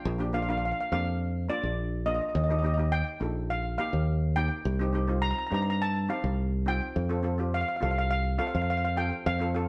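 Carefree and festive, this short calypso excerpt has a shimmering double-seconds steel pan, struck with hard rubber sticks, carrying the up-front melody with a slapback echo, while a second metallic pan supplies accompaniment beneath it. A growly, punchy fingered electric bass sits forward in the mix, grounding a cheerful progression that moves from Bb to Eb, Cm and F. The band plays live together in a moderate stone room whose reverb gives the sound a natural, gently rounded top.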